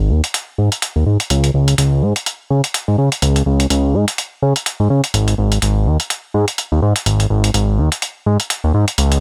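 A bright, dry 1980s-style digital sound frames this short, funky and sunny clip of filtered disco house with a swung sixteenth-note feel. A fat, detuned sawtooth analog bass sits up front, thick and saturated, with a filter sweep running through its sustained, fast-attack notes. From 0.2 seconds a gritty, compressed, sampler-style electronic hi-hat joins it up front, tape-tinged and set in a small room ambience.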